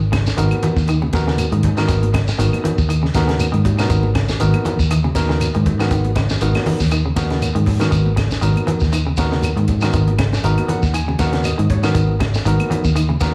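Driving and intense, this afrobeat excerpt rides a single G#m9 chord in G# minor at 119 BPM with a light sixteenth-note swing. A punchy, foam-muted fingered electric bass plays alongside a compact cocktail drum kit with a high-tuned snare and a dark, rolled-off top. Ringing, hard-handed congas and woody, dry claves sit in the background, joined by a grainy, distant shekere. A bright, picked clean electric guitar plays arpeggios through lush chorus and analog delay, while a barky, lightly overdriven tine electric piano accompanies through a combo amp and adds a fill from 10.4 to 11.9 seconds, in a moderate large studio reverb.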